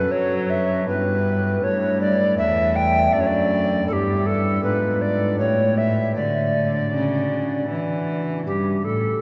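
An airy, woody tenor recorder with chiff, tongued notes and vibrato carries the melody up front in this flowing, dance-like baroque-style sonata movement in D major at 79 BPM in 3/4, over a rich, smooth, bowed solo cello bass and soft organ flute stops in a romantic voicing, all bathed in a long cathedral reverb, as the harmony moves through a diminished chord and A7 to settle on D at 6.2 seconds in this short cut from a longer piece.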